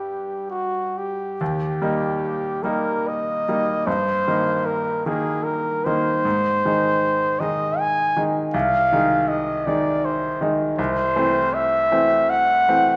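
A dark, smooth-topped trumpet with light vibrato carries a serene romantic classical melody in Eb major, up front over a brilliant, polished grand piano accompaniment with short sustain, unfolding in a rubato 3/4 at 62-81 BPM through harmonies that move from G to Eb, Ab and Am/C, all bathed in the wet reverb of a recital hall in this 13-second fragment of a longer piece.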